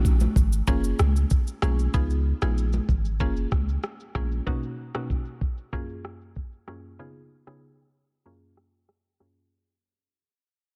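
Joyful and sunny, this afrobeats clip pairs a woody, round mallet-like synth pluck with chorus, carrying a chord loop of Bmaj7, F#maj7 and C#7, over an up-front electronic drum kit of knocking kick, rim click and shaker, a deep, punchy sine sub bass with a pitch-drop attack that stops at 4.4 seconds, and thin-skinned congas tucked in the background until 4.3 seconds, all in a dense, dry, heavily limited mix that fades out under a filter sweep.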